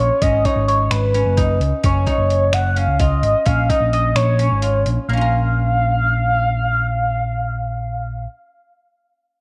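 A screaming, guitar-like overdriven synth lead with chorus carries the melody up front in this tense, intricate progressive instrumental in 7/8 at 258 BPM (eighths) in Bb phrygian, while silvery, ringing guzheng arpeggios played with fingerpicks, a dark, round picked electric bass and a dusty, thumpy soul sampler-style drum kit of finger snaps, hi-hat and kick, heard only from 0.2 to 5.0 s, sit in light reverb as Abm7 and Bbm7 give way to Bbm at 5.1 s.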